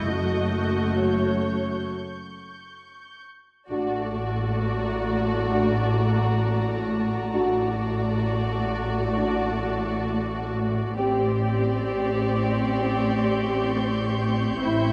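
Eerie, tense cinematic suspense score at a slow 66 BPM, in which veiled con sordino violins carry the melody over dark muted violas, cellos and double basses, while a distant high violin texture hovers above; after a chordless break from 1.9 s, a lush second violin line and a warm French horn section's sustained chords enter at 3.7 s, all bathed in a wet scoring-stage reverb.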